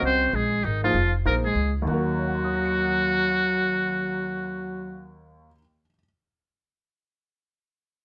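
Swung eighths in 4/4 drive this intense, spiritual fragment of modal jazz, where a buzzy, up-front muted trumpet carries the melody over a whispered trombone second line, a worn baby grand piano with short sustain accompanies until 6.0 s, and a woody pizzicato upright bass thumps below, set in moderate studio reverb as the harmony moves from Eb13sus4 to Ebm at 1.9 s.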